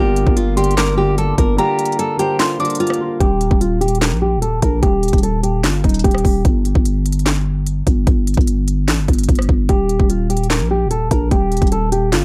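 Brooding and hard-hitting, this half-time hip hop and trap cut from a longer piece puts a fingerpicked nylon-string guitar melody up front, its classical tone carrying audible finger squeak and softened by a low-pass filter and tape echo. A dark, mellow concert grand piano with deep low end supports it only until 3.2 seconds, while a soft FM synth bell adds a pure, gentle second line with chorus and tape echo near the start. Underneath, a growling, buzzy 808-style bass with a fast attack and decaying sine body runs throughout, and an electronic trap kit sits up front with a hard-clipped kick, sharp snare, crisp hats, handclaps and rim clicks. A short break arrives early on, and the harmony moves from Gm7 to Eb before the guitar drops out at 6.4 seconds and returns at 9.7 seconds. The mix is warm and nearly dry, with little reverb, keeping the beat close and heavy.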